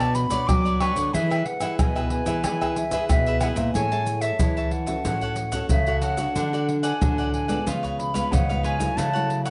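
A hollow wooden flute carries the melody with an airy, vibrato-laden tone and soft attack in this playful, sunny samba and choro excerpt in A major at 92 BPM. A bright, crisp picked cavaquinho and a fingerpicked classical nylon-string guitar fill out the accompaniment, while a second nylon-string guitar plays the bass with audible finger squeak. Maracas, surdo, pandeiro and tamborim sit up front with a tight surdo in a live room, and a mellow, unsteady bamboo bansuri drifts in distantly in the background from 2.8 to 3.7 seconds, all under light reverb and a softened top end.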